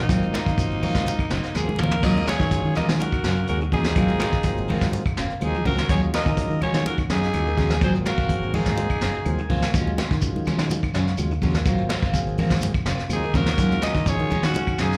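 Heard through a club's PA with light reverb, this afrobeat cut from a longer piece has a driving, funky feel at 125 BPM in Eb dorian, alternating between Ab13 and Ebm11 chords. A raspy, gritty alto saxophone carries the melody with slapback echo, dropping out after 9.5 seconds and returning at 13.1, while a distant, roomy trumpet with vibrato plays a second line beneath it on the same schedule. Two slightly broken-up, twangy electric guitars sit in the background, one fingering arpeggios through ensemble chorus and the other picking stabs through a phaser. A round, punchy fingered bass anchors the low end, and a mellow vintage combo organ supplies accompaniment, adding a fill around 9.0 seconds. Up front, a brush drum kit with dark cymbals and a tight kick adds a fill near 1.6 seconds, backed by thick-skinned congas, woody claves kept very quiet, and a grainy shekere that drops out and returns at 9.7 seconds.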